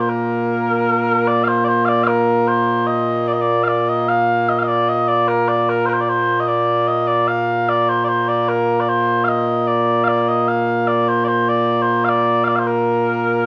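Mellow, sweet small bagpipes play solo and up front with vibrato and a continuous sound in this stirring, proud Scottish traditional excerpt in Bb major, moving at 75 BPM in a straight 2/4 across a range from Bb2 to F5, with a short opening section giving way to a longer one at 1.7 seconds, all set in the moderate reverb of a recital hall.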